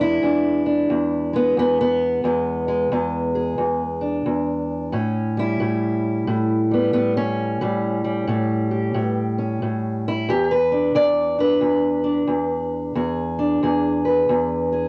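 Laid-back and rollicking, this short excerpt of acoustic country blues features a lone fingerpicked steel-string parlour guitar, dark, woody and boxy with old strings, sitting up front in a home cassette recording with light reverb as it swings through E7, A7 and back to E7 at 10.3 seconds.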